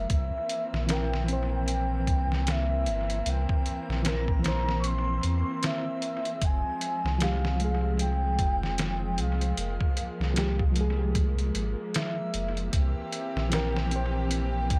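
A swung 16th-note trip hop groove from a muffled, pitched-down sampler-style kit with a thumpy kick, entering at 0.1 s and soaked in tape echo, sits up front beside a round sub bass, while a reedy electric piano with harmonic tremolo, distant bowed chamber strings and a breathy sine lead through phaser and lush chorus move from C7 to Fmadd9 and back in this hypnotic, smoky excerpt.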